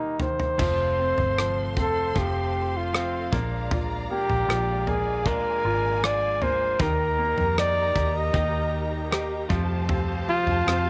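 A warm flugelhorn leads this hopeful, emotional pop ballad excerpt, sitting up front as a jazz-style solo with a soft attack, light vibrato and scooped notes across its melody. The piece moves at 78 BPM in straight 4/4, cut from a longer piece, and opens with a short drum fill beneath the horn and piano before the strings, guitar and bass enter at 0.6 seconds. A bright concert grand piano with a brilliant, polished tone and deep bass supports the horn, while a dark, lush studio string section holds expressive bowed chords with a smooth top. A clean, compressed electric guitar picks arpeggios in the background, and a vintage foam-muted fingered bass adds a round, punchy low end. The natural country drum kit brings a tight kick, rim clicks, toms and dark cymbals, all set in a small, intimate room ambience, as the harmony moves from Eb through F and Bb7, back to Eb, before closing on Fadd9.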